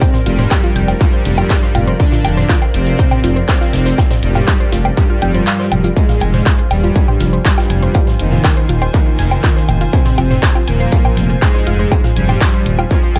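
A distorted, overdriven electronic kick sits up front in this dark, melancholic melodic techno excerpt, dropping out briefly at 5.5 seconds as a very quiet swell sounds between 5.3 and 6.0 seconds. A rumbling detuned saw bass with tube saturation enters at 0.3 seconds. An overdriven techno kit of handclaps, hi-hat, toms and woodblock and a faint acoustic kit of hi-hat and snare fill out the drums. Above them, an airy, smooth supersaw melody with tape echo and cassette grit, a morphing vintage wavetable pad, and a lo-fi, nasal pluck playing arpeggios through digital delay all pump against the kick within a digital ambience, as the harmony moves from Gm7/F to Fm.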